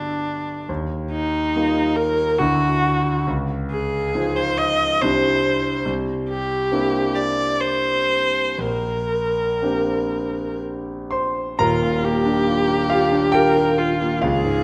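Luminous and pastoral, this impressionist classical duo in a rubato 3/4, cut from a longer piece, sets a rich, smooth, even bowed viola melody with vibrato up front against a clear concert grand piano with deep bass and long sustain, drifting through colorful add9 and ninth chords into a new section at 11.6 s, all bathed in the wet reverb of a recital hall.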